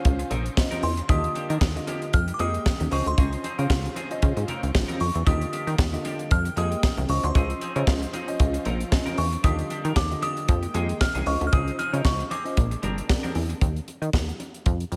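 A light reverb gives this feel-good, danceable slice of early-eighties boogie funk a polished studio sheen, with a dry, airy drum kit and a punchy analog bass sitting up front. At 115 BPM in 4/4 with a gentle 16th-note swing, the tight kick, medium-tuned snare and hi-hat drive the groove while the funky sawtooth and pulse-wave bass plucks with a fast attack and an evolving filter. A worn, slightly out-of-tune tine electric piano and a bright, compressed semi-hollow guitar riff share lush chorus and slapback echo, moving through Dbmaj9, Ebmaj9 and Fm11 before a Bb9 at 12.6 seconds. Above them a delicate, tinkling FM synth bell carries the melody from 0.8 seconds, its chorus, slapback and tape echo adding shimmer, while very quiet, smoothly bowed strings with vibrato and ringing, low-tuned congas played with soft hands fill in beneath. At 13.6 seconds the chords drop out, and the drums, bass and congas carry on, the congas stopping at 14.5 seconds while the drums and bass continue to the cut at 15.0 seconds.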